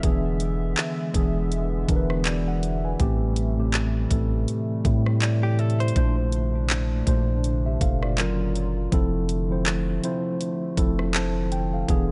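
A mellow tine electric piano sits up front in this romantic, smooth contemporary R&B excerpt in F major at 81 BPM, with a swung 16th-note feel and chords moving from E7 and Am7 through Bbmaj9 and Gbmaj7 before settling on Fmaj7. Beneath it, a deep, sine-toned 808-style bass holds long decaying notes, while a produced electronic drum kit with a knocking kick, tape-warm hats, rim clicks and handclaps carries the groove. A hollow, flute-like pad with chorus hovers softly in the background, and a clean, direct-recorded electric guitar adds a brief delayed arpeggio between 5.4 and 6.2 seconds, all held in a digital ambience whose top end stops around 10.9 kHz.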